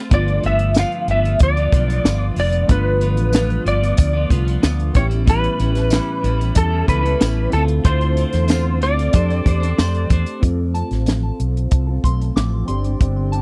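Dry, close and 1970s-styled with little reverb, this dreamy, hazy indie and bedroom pop fragment at 93 BPM in F lydian sets a twangy, slide-played lap steel melody with ensemble chorus over clean, compressed electric guitar with subtle chorus and vibrato, warbling lo-fi synth keys, a round, up-front fretless bass and a punchy, high-tuned compact cocktail drum kit, with a jingly tambourine in the background until 9.9 s and a soft, pure FM synth bell with tape echo entering at 10.7 s.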